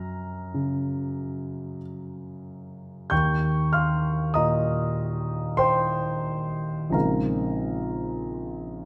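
Impressionist classical solo piano in a wistful, nocturnal mood, this short cut from a longer piece drifts in rubato triple time as an intimate, up-front concert grand with deep bass, long sustain and audible action noise spans Bb1 to Bb6 through Gb, Eb9 and Bbm11 harmonies, set in a moderate scoring-stage reverb.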